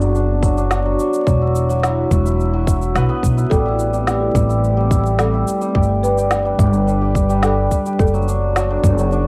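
Intimate and delicate, this short stretch of folktronica moves in a straight 4/4 over a gentle chord cycle from D6/F# through Esus2, Am7 and G. A warbling, detuned tape-like pad with a nostalgic lo-fi tint holds sustained chords with a slow attack, coloured by chorus, phaser and its own reverb. An up-front cimbalom rings out shimmering hammered arpeggios treated with tape echo, above a thumpy pizzicato upright bass with steel strings. From 0.4 s a tight electronic kick joins the electronic cabasa and a woody snare, both re-recorded in a large room. At 3.5 s a rustic folk marimba played with medium mallets enters in the background with a second line, its dry hardwood bars carrying tape echo until 8.3 s, all framed by a close 1970s-style studio sound with vinyl crackle.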